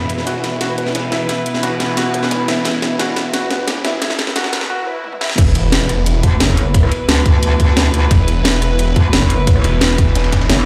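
A small, lightly reverberant room sound opens this dark, mechanical excerpt of technical drum and bass at 176 BPM, where a gritty, felt-muted upright piano arpeggiates over distant, reedy bowed strings, a blurred granular cloud pad, a snarling distorted saw bass and a very quiet, crunchy breakbeat kit beneath the cracking snare and bright hats of an overdriven, up-front main kit. A drum fill and a riser carry the build-up to a brief break, and at 5.4 s the drop lands with an impact and a tight, overdriven electronic kick. At 6.2 s a metallic, chorused wobble bass joins up front, and the strings and saw bass pump against the beat.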